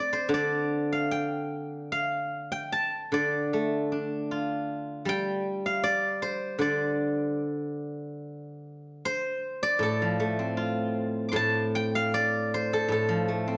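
A dark production places a solo steel-string zither up front in a moderate recital-hall reverb of 1.5 seconds, its acoustic, fingerpicked tone silvery and ringing. This short cut from a longer Chinese traditional piece moves in a free, rubato 2/4 around 77 BPM in D yu mode, spanning A2 to D6 with a longing, elegant air. An opening passage gives way to a new section at 8.2 seconds, which runs to the close at 13.6 seconds.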